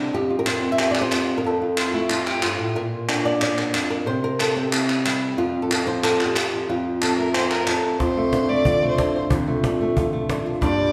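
The recording sits in a reverberant recital hall or church, with a long, wet tail surrounding a fiery, proud flamenco passage at 183 BPM in F major, cut from a longer piece. A fingerpicked acoustic flamenco guitar with a warm tone carries the melody up front, over chords moving from Fsus2 through F, Bb and C, then a moment where the harmony drops out before F returns. A bowed violin, played by one player with light vibrato and a smooth, even sound, adds a second line at the start, returns at 7.0 s, and takes a solo from 8.0 s. Crisp palmas hand claps fill the first stretch, sounding distant in a large room. A woody cajon with faint snares enters at 8.0 s to carry the percussion to the close.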